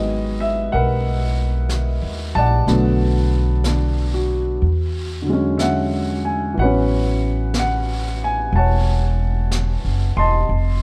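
A gently swung 4/4 pulse sets the pace for this slow, wistful, smoky jazz ballad, carried by a pizzicato upright bass with a woody, up-front tone and an open-sounding upright piano playing chords through G#m9, Bm7, E13 and A69. A brushed drum kit with a medium-tuned snare and hi-hat joins at 0.7 s, sitting low in the mix with a natural small-room sound. The production is dark and warm with little reverb, and the passage is cut from a longer piece.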